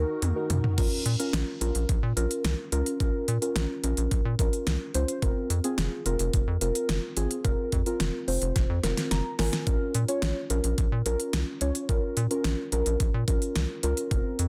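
A rubbery, hollow square-wave bass sits up front in this melancholic, cool synth-pop fragment in Bb minor at 108 BPM, joined by muted, felt-like synth keys with chorus and phaser that play a soft, dark accompaniment and add a fill from 8.8 to 9.7 seconds. A swirling, detuned analog pad sounds only briefly at the opening before the harmony moves from Ebm to Bbm and Fsus4, while an electronic pop drum kit with a knocking kick, fat snare and crisp hats plays fills at the start and around 8.6 seconds. The mix carries light reverb and a dense, heavily limited modern master.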